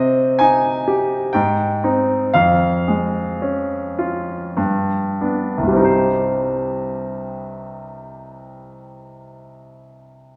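In a rubato 3/4 that slows over the first 5.9 seconds, moving between 44 and 64 BPM, this passionate, bittersweet fragment of a romantic classical character piece in C minor, tuned to A4 = 439 Hz, gives a solo concert grand piano, bright and brilliant with a deep bass and short sustain, the stage as it moves from C minor through Abmaj7, Db/F and G7 back home at 5.9 seconds to open a new section, heard from further back in a wet recital hall with a 1.7-second reverb tail.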